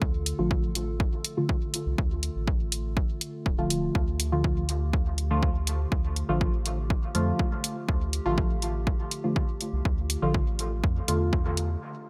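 A deep, mellow chord stab with chorus, phaser and dub echo rides a filter sweep across this cavernous, nocturnal dub techno excerpt in D minor at 122 BPM, pumping over a round analog bass with tube saturation, a punchy overdriven electronic kick, an overdriven low-pass-filtered hi-hat entering at 0.3 seconds, and a warbly, lo-fi tape-like pad sustaining dark chords in the background, all set in light digital ambience.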